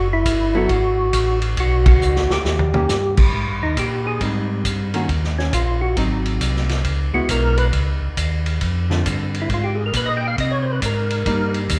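Swinging and soulful, this soul jazz organ trio excerpt moves at 136 BPM in 4/4 with a lilting swing on the eighth notes, settling into Ab major from 3.3 seconds. A percussive tonewheel organ carries the melody with a fat, clean tone, third harmonic percussion and key click, colored by chorus vibrato and a slow rotary speaker. Underneath, a second tonewheel organ plays the bass up front, round and dark with light overdrive and its own slow rotary swirl. A vintage acoustic drum kit with dark cymbals, a punchy kick and a rolled-off top joins the band accent at 1.8 seconds and plays a fill just after, while a clean, picked hollow-body archtop guitar sits lower in the mix as accompaniment. From 3.3 seconds a tonewheel organ solo unfolds over chords moving from Abmaj7 through Ab7 and Dbm7 to Cm7, all set in a moderate concert hall reverb that gives the trio a roomy, churchlike air.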